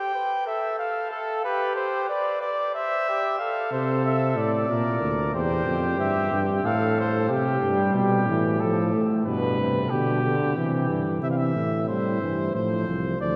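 In a straight triple metre, this stately, joyful classical canzona excerpt for brass ensemble opens with a warm, close-miked cornet melody beside a distant, roomy trumpet second line with light vibrato, a smooth-topped bass trombone enters at 3.7 seconds and a soft-attacked, mellow trombone accompaniment joins at 7.6 seconds, and the cornet returns at 11.2 seconds as the trumpet drops out, the ensemble bathed in a long cathedral reverb.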